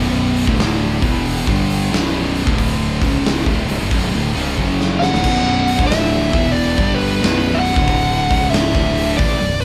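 Up front, a dark fuzz lead guitar enters at 5.0 seconds to carry the melody over a brooding, heavy stoner and doom metal groove in B minor at 91 BPM, swung in 4/4. Beneath it, two thick fuzz guitars and a bright, scooped, double-tracked high-gain guitar grind out the riff from the start, joined by a growling overdriven bass and a big acoustic rock kit with a tight kick and rolled-off top that comes in at 0.4 seconds and throws a fill from 4.6 to 5.2 seconds as the lead arrives. The band sounds like it is playing live together in one large studio room, with a moderate reverb tail on this cut from a longer piece.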